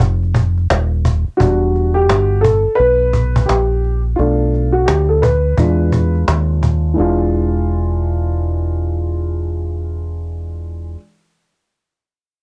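Jazz-hop with a smoky, mellow mood, this short cut from a longer hip hop piece moves at 86 BPM in 4/4 with swung sixteenths. It opens on a break of round, dark fingered electric bass and a snappy, hard-handed cajon, both up front. A woody upright piano with a vintage cassette-tape color enters at 1.4 seconds over chords such as Em9 and E7b9, and the cajon drops out at 6.8 seconds, leaving bass and piano in a lightly reverberant home-cassette sound.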